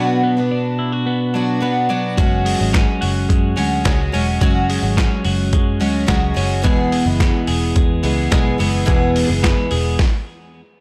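A straight 4/4 pulse at 108 BPM drives this bright, youthful slice of jangly indie pop, cut from a longer piece. A picked twelve-string acoustic guitar, shimmering and octave-doubled with fresh strings and a touch of finger squeak, opens alongside a clean, compressed twelve-string electric guitar playing arpeggios through a digital delay, both sitting up front. At 2.2 seconds a boom bap sampler-style drum kit arrives with a thumpy kick, a medium-tuned snare and hi-hat, its gritty, pitched-down, tape-warm sound re-recorded in a small room and placed up front. A vintage muted electric bass enters at the same moment, dark, round and punchy from its foam-muted, amped tone. The harmony moves from Bm to F#sus2 and then to E at 6.6 seconds, all within a digital ambience, before the music stops at 10.0 seconds.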